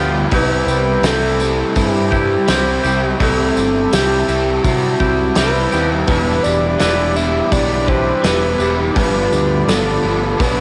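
A hazy, lo-fi home cassette recording with light reverb opens on a warbling, detuned pad sitting dark in the background alongside a lush-chorused overdriven semi-hollow guitar riff, a bright, twangy guitar riff bathed in reverse reverb, quiet slightly broken-up arpeggios from a guitar through a small old amp, and a growling overdriven picked bass. From 0.3 seconds a breathy, flute-like synth lead with vibrato, chorus and analog delay carries the melody over a loose indie drum kit with a fat snare and punchy kick, plus a jingly, distant tambourine. This melancholic shoegaze and dream pop passage moves at 83 BPM in a straight 4/4 through Cmaj7, Em7 and G7.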